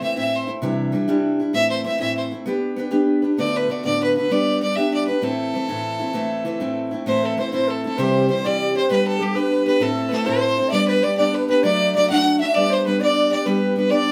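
A clear, biting fiddle with light vibrato carries the melody up front over warm picked steel-string acoustic guitar in this wild, driving Celtic folk excerpt in 12/8, played live in one room with wet studio reverb. An airy, wooden baroque flute, tongued and unsteady with vibrato, joins as a second line at 7.1 seconds for the repeat of the tune.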